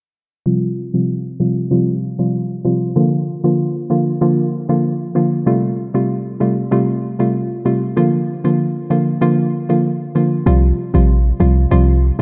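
A moderate, lush hall reverb surrounds this sunny, bouncy dancehall excerpt at 96 BPM, where a hollow, detuned square-wave pluck with chorus and a filter sweep carries the Csus4, Bb and Fadd9 chords from 0.5 seconds before a deep, boomy 808-style sine bass enters up front at 10.5 seconds.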